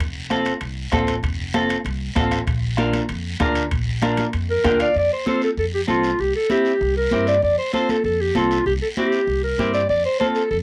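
A straight 4/4 cumbia groove sets a joyful, sunny mood in this short home cassette recording: woody, thumpy pizzicato upright bass, a soft-beater bombo that stops at 4.8 seconds, ringing timbales in the background until 5.0 seconds, and bright, high-tuned congas with a raspy guiro sit beneath a dark, picked clean electric guitar colored by cassette tape, whose fill at 4.5 seconds coincides with the entrance of a warm, classical-style clarinet that carries the melody up front, also tinted by tape, all within a wet booth ambience.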